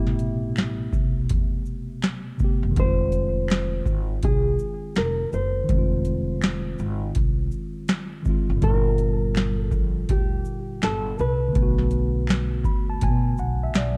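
Dark, hazy studio reverb wraps this reflective lo-fi hip hop excerpt at 82 BPM, swung on the sixteenths and tuned to A4 = 435 Hz, with a booming analog drum machine up front delivering a deep kick, tonal snare, metallic hats and shaker. A woody, growly pizzicato upright bass anchors chords moving from Am9 through Fm7 and Gm7 to Bm7, while a worn, slightly out-of-tune tine electric piano comps through a low-pass filter and adds a fill from 12.3 seconds. On top, a thumb-plucked nylon-string guitar with fresh strings and audible finger squeak carries the melody through a filter and tape echo, joined by a faint, vintage finger snap.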